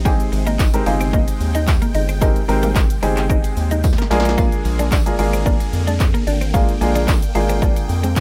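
Bittersweet and energetic, this dance-pop excerpt pairs huge, phased supersaw chords moving from Abmaj7 to Bb7 with a round analog bass and an up-front, clear baby grand piano, all three pumping with sidechain, while a hollow square pluck with chorus and delay carries the melody in the background, a twangy twelve-string electric guitar plays a riff, a punchy analog drum machine drives kick, snare, hi-hat, handclaps and shaker with a fill at 3.8 seconds, and a very quiet, jingly tambourine sits close in a dry, rough home demo mix.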